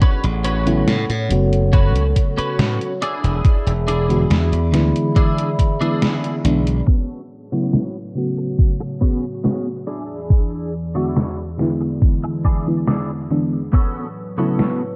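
An overdriven, thumpy electronic kick sits up front in this nostalgic, woozy vaporwave cut at 70 BPM in A major, alongside a detuned 8-bit drum machine's overdriven hi-hat and snare, a bright, punchy slap bass that drops out at 6.8 s, a lush, dreamy FM electric piano with tremolo and cassette-tape color entering at 0.7 s, a warbling lo-fi pad, and a clean, compressed twelve-string guitar riff through chorus and analog delay, the mix shaded by a dark, tape-filtered production as filter sweeps move over the drums, pad and guitar from 6.9 s while A69 and E7 chords alternate.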